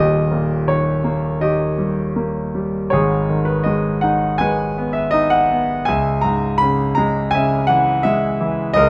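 Flowing in a rubato 4/4, this peaceful, calm classical excerpt features a clear, polished concert grand piano tuned to A4 = 436 Hz, placed up front with deep bass and a light reverb, lyrically moving from D# to G#m and then C#m across its 8.9 seconds.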